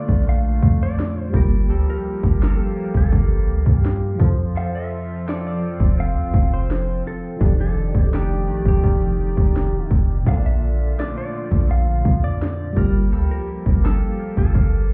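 This is a longing, late-night contemporary R&B excerpt at 84 BPM, opening on a bright, twangy clean electric guitar melody with spring reverb and tape echo over a phaser-tinted FM electric piano with tremolo, a shimmering retro pulse-width pad in the background, and a second guitar playing lush chorused arpeggios. From 0.1 s, an up-front trap kit with a hard-clipped kick, sharp snare and metallic hats joins a deep, boomy 808-style bass, the loudest parts of the mix. Moving through Bbmaj7, Gm9, F and F13, the whole track sounds muffled, as if heard through a wall in a club.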